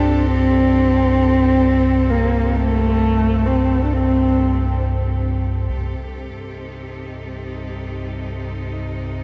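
A husky, woody horsehead fiddle carries the melody in this ominous, cavernous dark ambient drone, its single bowed voice sung with vibrato and portamento through a tape echo before it falls silent at 4.8 seconds. Underneath, a deep, rumbling synth drone of detuned, wave-folded triangle and sawtooth tones sits up front with its own built-in reverb, slow attack and long release, a filter sweep moving through it for the full 9.2 seconds. A lush symphonic cello section holds smooth, even, bowed chords on C minor with vibrato, placed close but low in the mix, and a fade-out draws it back over the opening stretch. The piece drifts in free time in C dorian, with the same material carrying on after the fiddle drops away. A huge ambient reverb with an 8.6-second tail and a capped top end gives the whole fragment a murky, cave-like depth.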